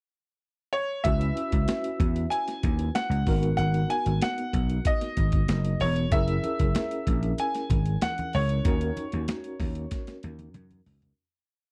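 A crisp sixteenth-note studio groove on a gritty, thumpy breakbeat kit drives this slick, urban 1980s jazz-funk pop piece at 95 BPM in C# dorian, where a punchy, growly slap bass plays an agile syncopated line, an overdriven tine electric piano with fast tremolo and lush chorus holds barky rootless chords, a brilliant, worn grand piano with slapback echo states motif-based call phrases from 0.7 seconds, and very quiet low-tuned congas slap on two from 6.1 seconds, all in a dry, close room through chords from C#m11 to D#m7 before a drum fill and fade-out close it at 11.2 seconds.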